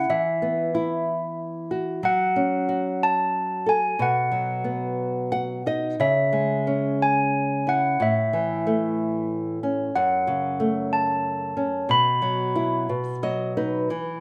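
Clear, ringing, airy handbells carry a tender, innocent lullaby melody up front, floating over a fingerpicked nylon-string guitar whose small, warm tone and occasional finger squeak sit just as close. This children's piece moves in a rubato 6/8 at about 61 BPM in dotted quarters, with the harmony drifting from Esus2 through F#m, B, C#m, A and F#m again before resting on Bsus4 and B. The guitar slips in brief fills around 5.0 and 12.9 seconds, and light reverb with close, detailed miking gives this short excerpt a soft, gentle glow.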